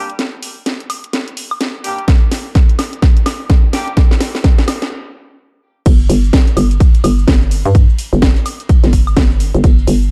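A dark, small-room production frames this bouncy, swaggering bass house cut, taken from a longer piece and moving at 127 BPM in 4/4 with a 60% swing on the sixteenths, in G minor over a G minor chord until the drop. A clear horn section opens with distant, roomy pop-style stabs carrying vibrato, pumped by sidechain and treated with a low-pass filter and digital delay, until they fall away at 3.9 seconds. Underneath, a layered, overdriven house drum kit plays a fill through most of the build-up with a cracking snare, crash cymbal, hi-hat, shaker and woodblock, while a punchy electronic kick sits up front from 2.1 seconds, both re-recorded in a large room. After a short break, the drop lands at 5.9 seconds with a hollow, knocking FM bass, fast in attack and decaying, bouncing under sidechain pumping. In the background, a soft brush kit adds natural acoustic texture with dark ride and hi-hat cymbals and a medium-tuned snare.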